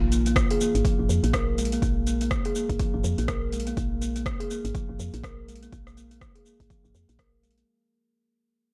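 A soft, round FM bass opens this earthy, hypnotic afro house excerpt, its dark, woody tone pumping against the sidechain from the very first moment. Almost at once a kalimba joins with mellow arpeggios, up front and ringing with a hollow-box, fingertip-plucked character. It passes through a low-pass filter and analog delay, and a filter sweep moves across it for the whole passage. An overdriven afro-pop drum kit brings metallic hi-hats, rim clicks and shaker with a sixteenth-note swing, sounding re-recorded in a small room. A punchy, layered electronic kick arrives at 0.4 seconds with its own overdrive, while the bass and kalimba both breathe with sidechain pumping. The fragment sits in a digital ambience with a dry, gritty hardware quality and transformer saturation, and it fades out across its full length, cut from a longer piece.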